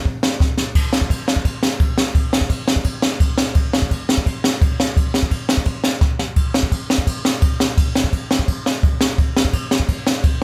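The recording is dry, with a band playing live in one room and very little reverb around it. A brush-played drum kit carries this rebellious, rowdy punk passage at 171 BPM in a straight 4/4, sounding acoustic, airy and polished, sitting up front in the mix. The kit comes in at 0.1 seconds, and a quick fill at 0.4 seconds leads into the main section. Its high-tuned snare and punchy kick drive the pulse, with hi-hat and crash cymbal brightening the top. A second drum fill at 6.0 seconds breaks up the groove before the kit carries on to the end of this short cut from a longer piece.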